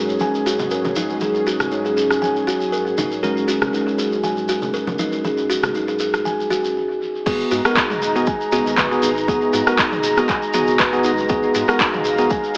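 An echo-heavy mix with an AM radio sound and moderate echo chamber reverb frames this earthy, driving afro house excerpt in G# minor at 119 BPM, its 16ths lightly swung. A woody, ringing kalimba plays arpeggios up front over a smooth, warbling vintage analog pad and bright, bell-like electric piano stabs under a filter sweep, those three pumping with the sidechain, while a grainy shekere rattles along and small-room congas sit in the background, and an overdriven, layered deep house kit with crash, handclaps, rim clicks and toms enters at 1.6 s. After a brief stop, the drop at 7.3 s moves from F#/G# to G#m7 and brings in a round, dark analog bass and a deep, tape-warm electronic kick.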